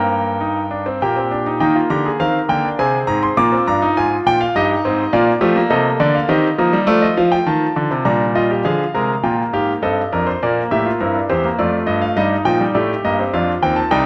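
In a straight 3/4 at 102 BPM, this elegant, lively baroque-style four-part fugue in Eb major, cut from a longer piece, is played by a solo concert grand piano with a brilliant, polished tone and deep bass, sitting up front in a moderate concert hall reverb, with its opening material returning at 8.6 seconds.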